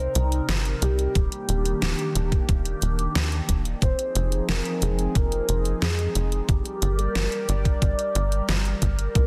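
Over a straight 4/4 pulse at 90 BPM, this moody, driving synthwave excerpt sets a tight, punchy sawtooth sequencer bass with tube saturation under a swirling, phased analog pad that pumps with sidechain, while a round, dark octave-layered synth lead carries the melody through chorus, phaser, cassette tape and delay, an overdriven pop drum kit with deep snare and hi-hat enters at 0.2 seconds and a thumpy electronic kick drum joins at 1.2 seconds, all moving through Cm7, Ebmaj7, Fm7 and Gm in light digital ambience with a dense, heavily limited modern master.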